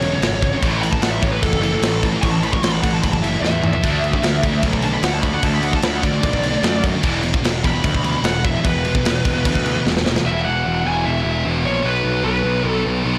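Epic, aggressive heavy metal clip in 4/4, where a dark, distorted lead guitar solos over two picked rhythm guitars, one bright and scooped in the background and one very quiet, as a growly, fuzz-driven bass and a tight, up-front drum kit with a rolled-off top drive the riff with fills at 3.4 and 9.8 seconds until the drums and quiet guitar drop out at 10.3 seconds, leaving lead, scooped guitar and bass in a blown-out, overdriven small-room sound.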